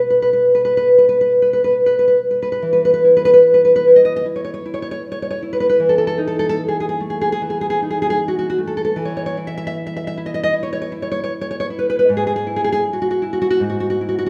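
A thumb-plucked nylon-string guitar sits up front in this tender, nostalgic excerpt of a romantic solo classical piece, its warm tone spanning G#2 to E5 over a freely breathing rubato pulse, as a brief opening passage gives way at 2.6 s to a longer section that touches a rootless F#m13/E at 5.8 s and settles on E/G# at 12.1 s, the guitar bathed in the lush reverb of a church or concert hall.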